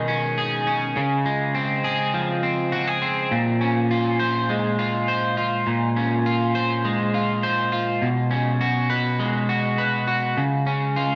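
A steady, straight 4/4 pulse at 102 BPM carries this blissful, floating dream pop excerpt, cut from a longer piece, where a lone electric guitar plays from 0.0 to 11.2 seconds, spanning Bb2 to C5. The guitar sits up front, picked and twangy with a slightly broken-up edge, colored by subtle chorus and delay as it moves through Cb69, Dbmaj7, Bbm9 and Cbsus2 before settling on Db. A lush hall reverb with a 2.4-second decay surrounds the guitar in a spacious, glowing haze.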